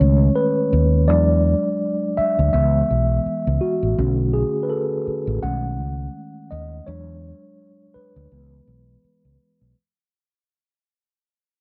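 Smooth and sultry, this short neo-soul R&B excerpt at 83 BPM sets a mellow, clean tine electric piano with cassette-tape color, taking a solo and sounding as if heard through built-in speakers, above a round, dark, up-front fretless electric bass over chords of B13, E9, C#m7 and Bm9, all in a dry home cassette recording that fades out from 0.0 to 9.7 seconds.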